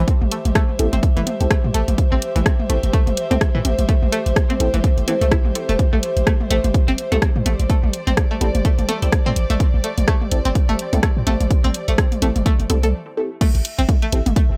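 An overdriven, punchy electronic kick sits up front in this hypnotic, clinical minimal techno cut, taken from a longer piece and moving at 126 BPM in 4/4 with a 58% swing on the 16ths in A minor. Beneath it, a deep sine sub bass with a pitch-drop attack pumps against the sidechain, while a layered house kit adds bright hats, crash and rim clicks, all overdriven, and electronic toms trail dub echoes. The riff comes from a twangy, warbling string-like resonator pluck with a vintage sawtooth edge, a noise layer and a filter sweep, treated with chorus, phaser, dub echo and sidechain pumping. Further back, a muted, nasal filtered dub chord stab with a moving notch drifts through phaser and echo, and a dark, intimate studio string section bowed sul tasto with light vibrato holds a smooth, pumping texture over Am7. After a brief break at 12.9 seconds, the drop at 13.4 seconds shifts the harmony to an A7 with its third omitted, all inside light reverb.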